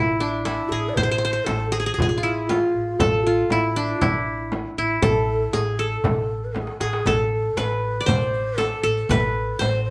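A bright-edged qanun leads up front, plucked with fingerpicks, while a breathy, hollow ney with vibrato carries a second line in the background and a woody, thumpy pizzicato upright bass holds down the low end. This is a longing, soulful Arabic maqam ensemble in A maqam nahawand at 118 BPM, cut from a longer piece. A distant, crisp metal-shell darbuka and a close, dry frame drum played with soft hands join almost at once; after a drum fill at 6.6 seconds, a very quiet riq with bright jingles enters at 7.1 seconds, all set in a wet studio reverb with the band playing live in one room.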